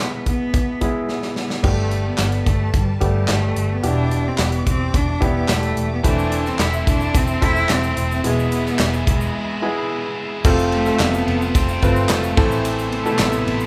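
Dramatic and bittersweet, this piano-driven pop excerpt moves at a straight 109 BPM in 4/4, cut from a longer piece and tuned slightly below standard pitch. A clear, focused cello with vibrato carries the melody over a polished, present baby grand piano, while an up-front acoustic drum kit with a punchy kick, bright cymbals, handclaps and a medium-tuned snare drives the groove after a short fill. At 1.6 seconds a dark, round, foam-muted electric bass enters alongside a lush, distant string section holding sustained chords in the background. A biting, double-tracked overdriven guitar riff with spring reverb arrives at 6.0 seconds, joined by a grainy tube shaker, before a break at 9.3 seconds. The harmony moves from E through Gadd9, Em7 and Am/E to a closing F and Am, and the band sounds as if playing live together in one large studio room.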